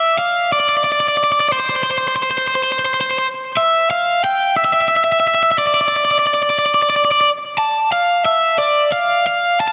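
A lush hall reverb surrounds a single cranked-stack electric guitar, overdriven and picked, sitting up front with a trail of analog delay. This brooding, cathartic rock fragment in D minor moves in a slow 6/8 at 60 BPM by the dotted quarter, the guitar carrying the melody between C5 and A5. The short cut from a longer piece runs just under 10 seconds.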